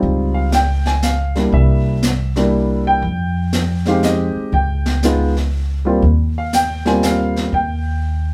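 A natural-sounding baby grand piano sits up front and carries the melody, ranging from G3 to Ab5 across this 8.3-second cut from a longer jazz piano trio piece. The mood is sophisticated and warm, moving at 120 BPM in a swung 3/4. The harmony passes through Dbmaj9#11, C7, Fm9, Db and Eb69. Beneath the piano, a woody, pizzicato upright bass with steel strings is also placed close, holding the low end between C2 and F2. A brushed drum kit sits lower in the mix, with a high-tuned snare, hi-hat and a boomy kick. All three play throughout in one studio room with a moderate reverb, giving the trio a live, unified sound.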